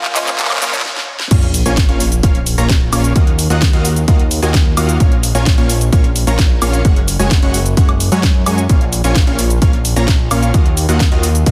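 A dense, heavily limited festival progressive house excerpt at 130 BPM in Bb minor, anthemic and emotional, opens with a brief build-up where a woody mallet-like synth pluck with 12-bit grit and a clean, direct electric guitar sit in the background over a very quiet riser, a house kit with cracking snare, bright hats and overdrive, and a detuned, full-bodied supersaw stab riff, before a punchy, up-front electronic kick joins at 0.4 s and the drop lands at 1.3 s with a fat, nasal analog bass pumping under the stabs through chords moving from Bbm to Ebmadd9 and Gbsus2.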